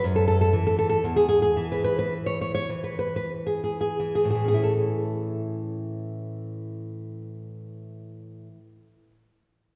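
A romantic piece for solo classical guitar, this brief excerpt has a warm, tender mood and moves in an unhurried 3/4 with a free, rubato feel, its tempo drifting between 43 and 62 BPM. The nylon-string guitar is the only voice, fingerpicked and sitting up front in the mix, its range spanning E2 to C#5. The opening settles on an F#m7 chord before the harmony falls away, and the pace slows through the first 4.6 seconds. At 4.6 seconds a new section begins on an A major chord, resolving toward the home key. A wet concert hall reverb with a 2.0-second decay surrounds the playing, placing the listener further back in the room so each note blooms into a soft, lingering halo.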